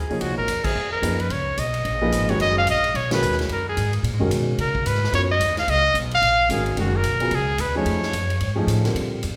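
A fast 219 BPM swing in 4/4 drives this open, hypnotic modal jazz fragment in Db mixolydian, where an up-front solo trumpet with vibrato and scooped notes leads over a woody, thumpy pizzicato upright bass on gut strings, short-sustained grand piano chords moving from Db13sus4 through Gbsus2 to F7alt, and a natural big-room drum kit with punchy kick and ride, hi-hat, snare and crash, the band hitting accents at 0.6 and 3.1 seconds inside a reverberant recital hall.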